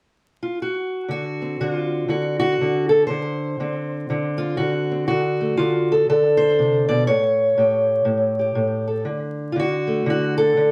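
Acoustic country blues with a swaggering, soulful mood at 120 BPM in a swung 4/4, carried by a dark, boxy parlour-style fingerpicked steel-string acoustic guitar that sits up front with slapback echo from 0.4 seconds, moving through D7 and A7 to settle on D at 9.1 seconds, recorded close and detailed in a modest booth with vinyl crackle in this brief cut from a longer piece.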